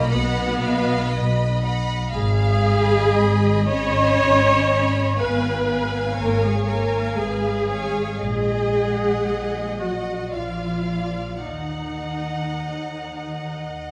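A classical slow romantic movement for string orchestra in Eb minor, this melancholic, solemn passage moves at 53-62 BPM in a rubato 3/4, tuned to A4 = 436 Hz, and is cut from a longer piece. A focused, close violin section carries the melody with vibrato, while a second violin section adds a soft-attack, expressive line above it. The viola section sits up front with a lush tone in the accompaniment, and the cellos supply a smooth-topped bass. The double basses enter at 0.1 s with an intense, up-front tone. The harmony drifts from B through Abm and Fdim/Ab before settling via Ebm/Bb and Bb onto Ebm at 11.4 s, all captured with close, detailed microphones in a moderate scoring stage reverb.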